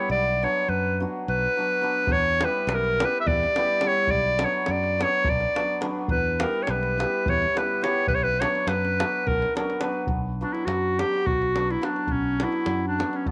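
A light reverb gives this short Balkan wedding-band excerpt a touch of air around its instruments. The tune moves in a quick 7/8 at 210 BPM in B harmonic minor, with a mood that is both bittersweet and fiery. Up front, a clear clarinet with a soft attack and smooth top carries the melody in a classical style, moving into a solo at 10.1 seconds. Beneath it, a hammered dulcimer supplies shimmering, ringing accompaniment, while a fingered electric bass holds the low end with a warm, direct tone. A tight davul, heard in a small room, joins at 2.1 seconds as the harmony alternates between Bm and Em.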